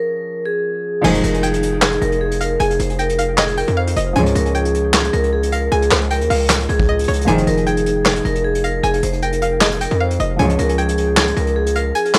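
Trap-inflected hip hop in F minor at 154 BPM with a half-time feel, this dark, melancholic excerpt opens with a ringing, metallic vibraphone melody over a mellow, deep-voiced grand piano, then at 1.0 seconds brings in a twangy, nasal resonator pluck line with chorus and analog delay, soft distant bowed string stabs, an aggressive distorted 808-style bass, and an up-front brush kit with dark cymbals, handclaps and a tight kick that drops out at 12.0 seconds, all set in light studio reverb on a dry, gritty recording moving between Fm7 and Db.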